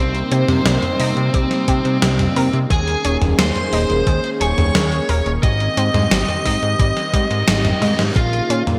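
Synthwave at 88 BPM in a straight 4/4, this short excerpt feels nocturnal and cinematic, moving through Cm7, Eb7sus4, Abmaj7 and touching Bbm7 at 8.2 seconds. A dark, fuzzy, compressed electric lead guitar carries the melody, with an airy, dreamy synth lead above it as a second line, soft and detuned with chorus, vibrato and delay. Beneath them a swirling, evolving pad holds sustained chords through a phaser and chorus, with sidechain pumping in the background, while a round, nasal analog pluck traces arpeggios with chorus and delay. A fat, saturated analog bass sits up front with sidechain pumping, joined by a tape-warm 80s drum machine playing hi-hat, snare and toms with gated reverb, and a thumpy electronic kick that comes in at 1.3 seconds. A drum fill and a very quiet reverse cymbal lead toward the close, all set in light reverb and a bright 1980s-style digital production.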